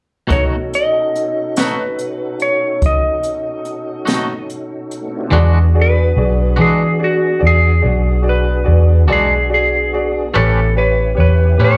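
In a straight 12/8 at 48 BPM, this swaggering, gritty slow blues, cut from a longer live club set, puts a clean, slide-played lap steel melody up front over woody upright piano and twangy, compressed electric guitar, both carrying slapback echo and the guitar also tremolo, while a tonewheel organ holds chords through a slow rotary speaker with key click, airy brushed drums with a boomy kick play until 5.1 seconds, and a dark, round, foam-muted bass arrives at 5.3 seconds as the harmony moves from B7 to E9 and then A9.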